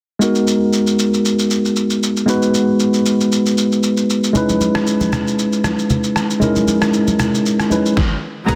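A worn, slightly out-of-tune tine electric piano sits up front, moving from G#m9 to C#m9 in this late-night, soulful amapiano cut, over a gritty, pitched-down sampler-style drum kit with a thumpy kick, rim click, shaker and snare, joined at 4.3 seconds by soft-handed, thick-skinned congas, until a break at 8.0 seconds gives way at 8.5 seconds to a brief flash of lush, bowed symphonic strings and a bright, detuned sawtooth pluck with chorus, all set in a lush hall reverb and a dense, heavily limited master.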